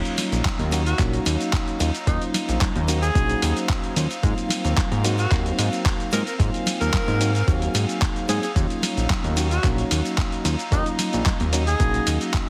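Groovy and sleek, this nu-disco excerpt at 111 BPM in Eb dorian moves from Ebm9 to Ab13 and back, with a fat, detuned analog bass up front, a thumpy overdriven electronic kick and gritty soul sampler-style kit of handclaps, hi-hat, ride and shaker, soft background congas and tube shaker, a clean tine electric piano with subtle chorus, a floating bowed violin section pumping against the sidechain, and a breathy, whispered tenor saxophone melody with scooped notes and dub echo entering at 0.9 seconds, all in light digital ambience and a heavily compressed radio sound.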